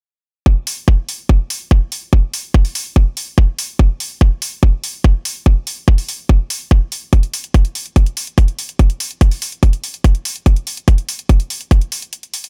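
A dry, close sound with little reverb frames this short cut from a longer trance piece, running at 144 BPM in a straight 4/4. The mood is hypnotic and alien, carried entirely by two electronic drum parts. A tight, layered, produced kick drum sits up front from 0.5 seconds, carrying the character of the small room where it was re-recorded. A bright, layered hi-hat joins at 0.7 seconds, mixed well beneath the kick and sharing that same small-room re-recorded quality. The kick stops at 11.8 seconds, leaving the hats alone through a brief break that ends at 12.5 seconds.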